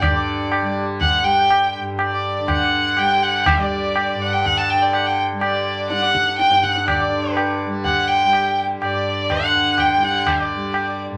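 Serene and devotional, this brief Hindustani classical passage moves in 7/4 at 123 BPM and gradually speeds up over its roughly 11 seconds. A clear, bowed solo violin carries the melody up front with vibrato, shadowed by a reedy, breathing pedal harmonium playing a second line in the background. Beneath them, a softly plucked tanpura drone buzzes and shimmers, and high-tuned tabla ring close and dry, all within a studio reverb.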